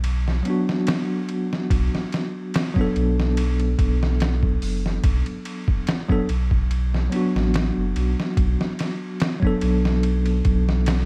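A dark, dry mix dusted with vinyl crackle frames this smoky trip hop fragment, which rests on a single Bm7 chord with a light swing. A gritty, compressed, pitched-down sampler-style drum kit with a thumpy kick, medium-tuned snare, hi-hat and ride sits up front in a small room, alongside a deep, round, soft dub sub bass. At 0.4 s a bell-like tine electric piano joins with a bright, clean tone, coloured by tremolo and tape echo.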